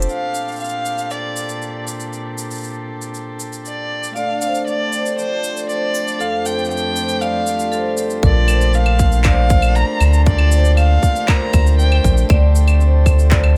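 A pastoral, hopeful folktronica piece in Bb major at 118 BPM opens on soft, floating sustained chords from a bowed string quartet and shimmering cimbalom arpeggios with tape echo and plate reverb, over a crisp, overdriven electronic kit of cabasa, claves, handclaps and hi-hat. A rich, distant solo violin sings the melody with vibrato and portamento through a grainy 12-bit sampler tint, and a metallic, hard-mallet vibraphone adds a second line in the background from 4.2 seconds. At 8.2 seconds a deep, round analog bass comes up front alongside a tight, overdriven electronic kick as the harmony returns to Bbadd9.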